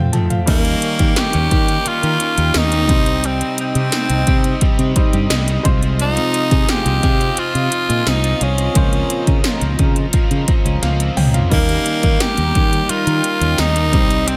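A straight 4/4 groove from 80s electronic pad drums sets a nostalgic, moody 1980s-style pop feel, with a punchy kick, gated snare, metallic hats, tambourine, crash and toms, and gated reverb on the snare and toms. The drums come in with a short fill before a raspy, gritty tenor saxophone takes the up-front melody at 0.5 seconds. Underneath, a fretless electric bass holds the low end, a clear grand piano with audible action noise accompanies and adds a fill around 5.0 seconds, a clean, compressed electric guitar plays a riff through lush chorus and digital delay, a very quiet double-tracked overdriven guitar adds bright support, and a shimmering pulse-width pad with a slow attack sustains chords from 0.8 seconds over changes from Eb7 through Cm and Fm7/C, all in a dry, close sound cut from a longer piece.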